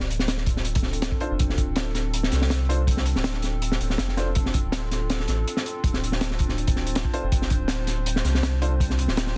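A dense, heavily limited studio sound carries this frenetic yet nostalgic drum and bass and jungle excerpt at 162 BPM in D minor, where a crunchy, punchy breakbeat kit with a high-tuned snare sits up front over a round, deep dub sub bass, a warbling lo-fi tape-like pad holds a Dm7 chord with chorus and its own reverb, and a mellow baby grand piano drops echoing stabs in the background from 1.2 to 4.3 seconds and again from 7.1 seconds.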